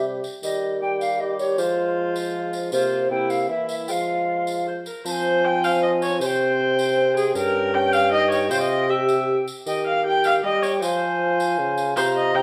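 Heard from further back in a wet stone room, this courtly, solemn renaissance-style consort dance in triple time sets a hollow, chiffy alto recorder melody over a rich gut-string viola second line, with two dark bassoons beneath (one soft-edged and roomy in accompaniment, the other punchy on the bass) and a close, jingly tambourine from 0.2 seconds.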